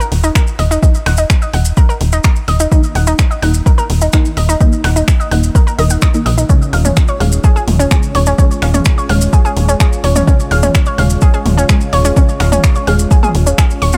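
Melodic techno with a hypnotic, cinematic mood, cut from a longer piece, built on a punchy, up-front electronic kick, a deep house kit of finger snaps, dark hi-hats and toms, grainy maracas, and a tight, nasal sawtooth sequencer bass that pumps under the sidechain. A round, bright analog pluck spins arpeggios through chorus and delay from the start, while a muted, full-bodied dub chord stab sits in the background with phaser and delay from 2.7 seconds. At 6.5 seconds a smooth, detuned analog pad with a moving notch brings sustained chords as the harmony shifts from Ebm to Db/Eb, all in a dry, close sound.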